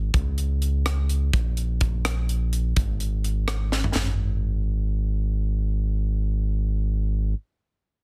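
A round, deep analog bass with a fast attack and sustained sawtooth-and-sine tone sits up front from the start and carries on alone after the drums stop at 4.1 seconds. This short excerpt is an intricate, bright progressive instrumental in 11/8 at 251 BPM in eighths with a straight feel. A crisp, polished fusion kit with a high-tuned snare, tight kick, hi-hat, rim clicks and toms plays in an airy studio room and closes its part with a fill at 3.7 seconds. The sound is dry, dense and heavily limited.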